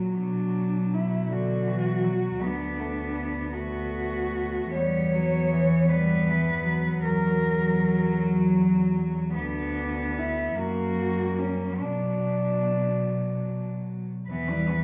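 Melancholic and solemn, this classical excerpt for cello ensemble unfolds in a slow, rubato 6/8 at about 47-55 BPM in B minor, with a dark, intimate cello carrying the melody from 0.2 s, supported by a clear, nasal second line in the background, a floating, distant accompanying cello and a bass cello, all bowed sul tasto with soft attacks inside a wet recital hall reverb.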